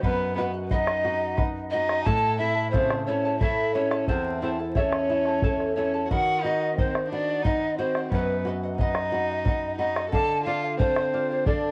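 In a straight 6/8 at an unhurried pace, this earthy, festive Andean folk excerpt sets an airy, mellow bamboo pan flute melody with vibrato and chiff up front over a deep bombo, a soft sul tasto violin second line, a fingerpicked flamenco guitar with finger squeak, and a shimmering charango tucked in the background, all colored by cassette tape, spring reverb, a small-room feel and vinyl crackle, with tape echo on the flute, and ending on a Dm chord at 10.1 seconds.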